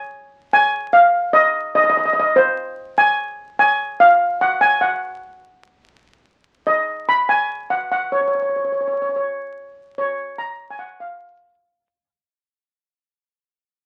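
A metallic, shimmering double seconds steel pan, played with medium rubber sticks, carries this sunny, carefree calypso alone and up front from 0.0 to 12.4 seconds, set in a boxy small room. The tune sits in F# major at 146 BPM with a light swing, and the sound has the vinyl crackle and aged character of a very old 78 rpm record with a short reverberant ambience. Cut from a longer piece, it begins fading out at 6.3 seconds as the second section starts.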